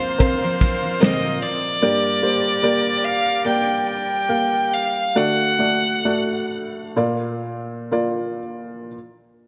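Pop ballad in a heartfelt, emotional mood, cut from a longer piece and gradually slowing from 1.8 s onward. A bowed solo violin carries the melody up front with smooth vibrato and a digital delay, while a soft, felt-muted upright piano gives mellow, intimate accompaniment with short sustain and plays on to 9.0 s, after the other parts have dropped away. A bright woodwind section holds sustained chords with light vibrato in the background, in a classical style. A picked jumbo steel-string acoustic guitar adds full-bodied arpeggios treated with analog chorus and digital delay, and an acoustic studio drum kit, dark and tight with gated reverb on kick, snare and ride, briefly joins near the start. The chords move from Bbadd9 through Gm and D to Bb, set in moderate plate reverb with a bright 1980s-style digital production.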